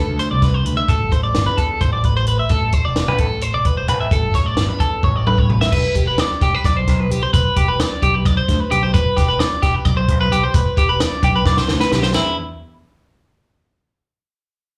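Heard as a live gig through a club's PA, the sound carries a touch of room ambience while the players stay close and present. This intricate, wistful fragment of math rock and midwest emo moves in E minor in a fast 7/8, counted at 261 BPM in eighths with a straight feel. A clean, compressed twelve-string electric guitar spins picked arpeggios up front, its tone warm and glinting with slapback echo. Beneath it, a fingered electric bass growls with bright, overdriven grit, and a compact cocktail drum kit sounds dry and punchy, with dark cymbals, a high-tuned snare and a firm kick. The harmony drifts from D5 through Am, E7sus4 and A9 before settling on Em7 at 5.7 seconds, and drum fills at 5.0 and 11.5 seconds mark the turns between passages.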